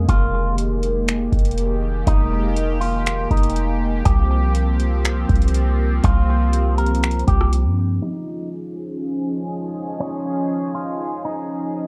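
A sweeping, resonant pad with a detuned sawtooth edge pumps under chorus and a low-pass filter over a deep, boomy 808-style bass and a booming analog drum machine of metallic hats, rim clicks and finger snaps, while a dark, clean electric guitar through an envelope filter carries the melody through spring reverb and delay in this melancholic, spacious half-time cloud-rap excerpt at 121 BPM, moving from Fm11 to C7sus4 before the drums stop at 7.6 seconds and the bass at 8.0 seconds, leaving pad and guitar under a filter sweep on Eb9sus4.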